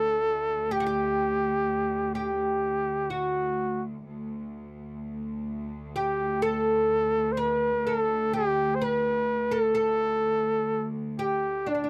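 Turkish music in makam hicaz on D, melancholic and soulful, moving at 126 BPM in a straight 10/8, where a veiled, breathy trumpet with bucket mute sings the melody up front with vibrato and a whispered, intimate pop-style tone, a woody, plectrum-plucked fretless oud traces a second line in the background, and a distant, nasal bowed cello section holds a low D drone, all captured in a dry, close 1970s-style studio sound with light reverb in this 11.9-second cut from a longer piece.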